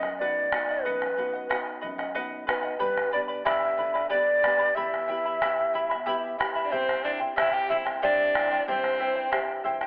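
Earthy and wistful, this Andean folk piece moves in a straight 6/8 and is cut from a longer performance. A large wooden quena carries the melody up front, its breathy, mellow tone marked by vibrato and a crisp, chiffy attack. The up-front charango fingerpicks a shimmering accompaniment on double strings, some doubled at the octave. A thumb-plucked classical nylon-string guitar adds warmth beneath it and plays a short fill from 1.8 to 2.8 seconds, while a deep, dark bombo sounds distant, as if in a large room. At 6.6 seconds a single bright violin enters close by with an intense second line, its airy bow colored by vibrato, as the harmony moves through B, G, Em and C. The whole is heard through a moderate recital-hall reverb but filtered to a thin telephone sound.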